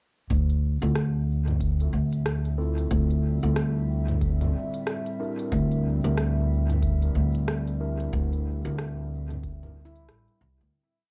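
This home cassette recording sounds dry and close, with a deep, spacious mood and a whole piece that rides a single groove at 92 BPM in 4/4, swung on the sixteenths. A warbling, lo-fi pad fades in and sustains dark, slowly shifting chords from Dm9 to C7/D, its detuned square, triangle and sine tones softened by chorus, built-in reverb and tape wobble. Up front, a woody, thumpy upright bass plays a pizzicato dub-style line on gut strings, while a soft, slow, tape-warm electronic kick thumps beneath an overdriven drum kit of crisp closed hats, low toms and rim clicks that taps out a sparse echoing beat. A mellow, clean tine electric piano adds sparse chord stabs, one shape moved in parallel and thrown into dub echo with analog chorus. After the piece begins fading out at 7.3 seconds, a faint, ringing handpan enters at 9.9 seconds with one slow, meditative loop of bright, sharp finger strokes.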